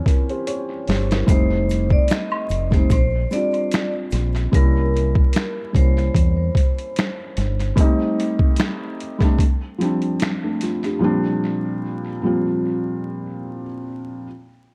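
A felt-muted upright piano, soft and mellow with audible action noise and cassette-tape character, opens this cosy, nostalgic lo-fi hip hop excerpt in Bb major at 74 BPM with a light swing, joined at 0.1 seconds by a gritty, pitched-down boom bap drum kit with thumpy kick, snare, hi-hat and finger snaps, then a round, punchy dub electric bass, a dark ringing vibraphone melody with slow motor vibrato and tape echo, and a faint band-limited egg shaker and woodblock, all set in an echo-heavy mix with vinyl crackle as the piano carries on alone after the drums stop at 11.0 seconds.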